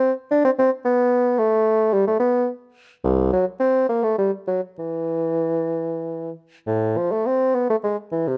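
Flowing and introspective, this short classical excerpt is a baroque-style fantasia for unaccompanied bassoon in a rubato triple metre. The mellow bassoon sits up front, played in a classical style with light vibrato as it ranges from its deep low register up to its middle, alone for the full 8.4 seconds. Light reverb and a dark, warm production lend the solo line a soft, enclosed glow.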